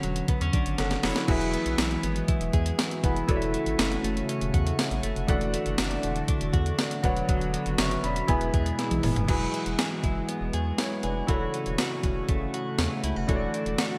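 Glossy and uplifting, this bright 1980s-style pop passage pairs a thumpy, gated-reverb drum machine, with fills at 0.8 and 8.8 seconds, with a round analog bass, an intimate grand piano with audible action noise, and a compressed clean guitar riff through digital delay, while a shimmering pulse-width pad enters at 1.3 seconds to hold sustained chords inside a lush hall reverb.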